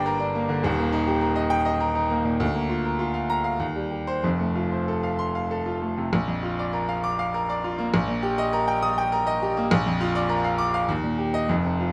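A classical virtuoso piano study in 3/4 with a flexible, rubato feel, this heroic excerpt features a solo grand piano with a bright, open tone and long sustain, spanning from Eb1 up to Eb6. A minor-tinged opening gives way at 6.1 s to a second section that settles into major harmony for a triumphant passage. Close, detailed microphones place the piano up front, with a light touch of reverb.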